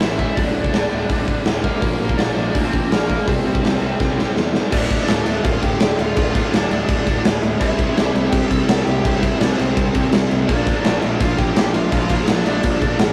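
Raw and angry, this punk rock cut opens with a smooth overdriven lead guitar carrying the melody over a crunchy overdriven guitar riff and a tight distorted guitar riff, both sitting very quiet beneath it. A growly, punchy electric bass holds the low end in the background while an up-front rock drum kit with a punchy kick and a medium-tuned snare drives the piece in a stone-room ambience, rolling through a fill from 4.0 to 4.7 seconds. At 4.7 seconds a double-tracked, compressed fuzz guitar joins the riffing, all in a rough rehearsal-room sound with light reverb and saturation.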